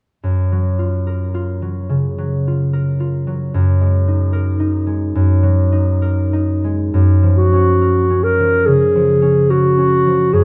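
A luminous, dreamy impressionist classical duo in F# major at a rubato 71 BPM, where a thumb-plucked, ringing concert harp accompanies alone from 0.2 seconds through F#maj7 and G#sus2/F# chords until a mellow, roomy solo clarinet enters up front with the melody at 7.4 seconds, all softened by a moderate recital-hall reverb, in a fragment cut from a longer piece.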